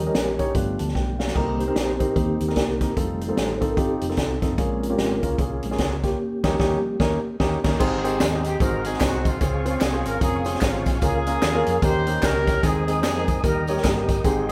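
Soulful and reverent, this swinging uptempo gospel excerpt opens with a mellow, flute-like tonewheel organ solo through a slow rotary speaker, set over an up-front grand piano with short sustain, a round, punchy hollow-body electric bass, and a big-band drum kit with a high-tuned snare and boomy kick; tambourine and group handclaps join in the background at 7.8 seconds, and a distant, roomy horn section takes the melody with light vibrato from 8.5 seconds, all in a light live-room reverb.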